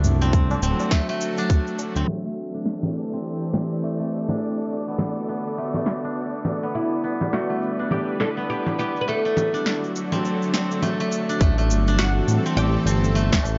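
A swung 103 BPM groove in 4/4 drives this earthy, hypnotic organic downtempo excerpt in A dorian, built on punchy layered electronic cabasa, snare and congas, with a tight, tape-warm electronic kick and a low-tuned background tabla framing the opening and closing seconds alongside a smooth, sidechain-pumped synth bass. A tense, string-like drone holds sustained chords under the silvery, fingerpicked arpeggios of a steel-string zither, which carries a filter sweep and analog delay through the middle stretch as an airy, breathy wind texture drifts far behind, and a woody, fretless oud enters with a delayed melody at 6.7 seconds. The chords move from D through Am7, Bm7 and Em7 back to D and Am7, captured as a dry, gritty hardware recording with light reverb and a darkened top end.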